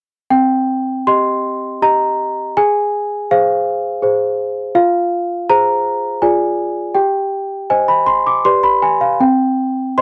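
A worn celesta carries this brief classical lullaby alone, its bell-like, slightly out-of-tune voice sitting close and up front from 0.3 to 10.0 seconds. Soft felt hammers lend the tone a mellow, delicate sweetness, and the instrument sounds soft yet full. The mood is wistful and fragile, moving in a gentle three-beat lilt with a straight feel, spanning roughly C4 to D6. The harmony drifts from C minor through F minor and a diminished chord before settling on G and closing on a bare open fifth on C. The sound is dry and closely captured in the manner of a 1970s studio, with only a light touch of reverb, and the passage is cut from a longer piece.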